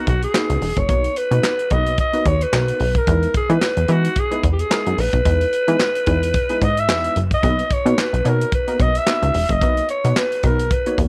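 A lightly swung 16th-note groove at 110 BPM in 4/4 drives this smooth, danceable early-eighties boogie funk in B major, where a raspy, growling alto saxophone with slapback echo carries the melody up front over a dark, detuned polysynth comp with chorus, a plucky, punchy analog bass, and a tight, dry drum kit of kick, snare, hi-hat and handclaps, set in a small room with light reverb as the chords move from Bmaj7 to Emaj7 at 3.1 seconds and back at 7.4 seconds.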